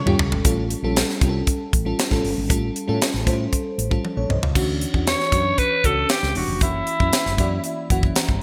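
Polished 1980s jazz-funk pop at 117 BPM in 4/4, breezy and glossy, cut from a longer piece and built on a bright digital production with moderate plate reverb. A tight funk drum kit with a high-tuned snare and gated reverb sits up front alongside a woody, growly fretless bass, while a sparkling, bell-like FM electric piano with lush chorus carries the harmony through A7alt, Dmaj9 and F#7. Drum fills open the track and mark the shift to the second section at 4.6 seconds, a breathy, raspy alto saxophone with digital delay takes the melody from 5.1 seconds, and the electric piano closes with a fill from 7.1 seconds.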